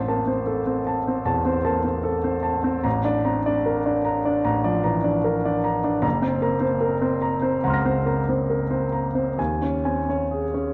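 Through the warbling drift of worn cassette tape and a moderate scoring-stage reverb, this serene, luminous snippet of impressionist solo piano unfolds in unhurried rubato, its intimate grand sitting up front with long sustain and audible action noise, spanning Gb1 to Bb6 as the harmony drifts from Am through Bbmaj7/A and Gbmaj7#11 to an Eb7sus4 at 9.4 seconds.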